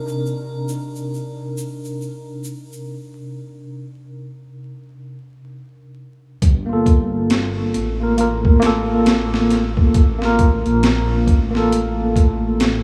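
Brooding and cinematic, this swung trip hop excerpt opens on a bright, clean tine electric piano with tremolo, tape echo and a filter sweep over a Cm7 chord, joined briefly by a faint egg shaker that drops out at 2.9 seconds. At 6.4 seconds the harmony moves to Gm7 as a deep, rumbling detuned saw bass with tube saturation and a gritty, overdriven boom bap drum kit arrive, its thumpy kick and high-tuned snare sitting up front. A huge ambient reverb soaks the dreamy mix, and vinyl crackle adds texture.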